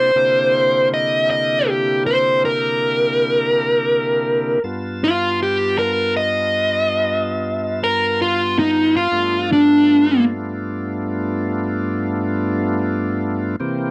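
A laid-back, gritty slow blues in 12/8 at 54 BPM, counted in dotted quarters, this short fragment is cut from a longer piece. A dark, smooth electric lead guitar carries the melody up front, its picked, overdriven tone ranging from D4 to Eb5 before it stops at 10.2 seconds. Beneath it, an overdriven tonewheel organ holds sustained chords through to 13.9 seconds, sounding full and thick through a slow rotary speaker and sitting lower in the mix than the guitar. The harmony moves from C9 to G9 at 4.6 seconds. The sound is that of a dry, close 1970s-style studio recording with light reverb.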